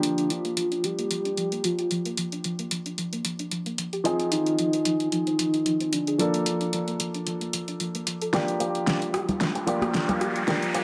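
Nu-disco with a groovy, cosmic mood, this brief excerpt rides a lightly swung groove over a cycle of Gm7, Ab6 and Bbmaj7 chords. A soft, octave-layered synth lead carries the melody with a full, round tone thickened by chorus, tremolo, vibrato and tape echo, while a dark baby grand piano plays mellow, intimate accompaniment through a low-pass filter, its action noise audible. A gentle, decaying pluck adds arpeggios colored by analog chorus until 8.3 s, when a build-up begins with a drum fill and a filter sweep. Up front, the pop drum kit's fat snare, hi-hat and rim click sound electronic and overdriven. At 8.6 s a bright, twangy electric guitar with an envelope filter enters in the background with a clean, picked riff, an electronic riser starts at 9.1 s, and ringing, close-miked congas join briefly, all sitting in a moderate plate reverb.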